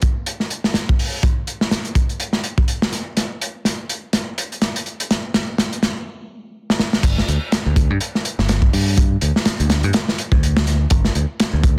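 A crunchy breakbeat drum kit opens this gritty, swaggering breaks excerpt, its punchy kick, medium-tuned snare, hi-hat and dark crash cymbal sounding saturated and close, with a rolled-off top and a small-room feel. The groove carries a light swing as the opening build-up unfolds, with a drum fill arriving at 3.2 seconds. A brief stop lands at 6.1 seconds before a short fill pushes into the drop at 7.0 seconds. There a picked electric bass joins in, growly and direct with tube saturation, sitting up front in a low register beneath the kit. The mix is dry and dense, with a heavily limited, modern master that keeps the whole passage tight and forceful until it cuts off.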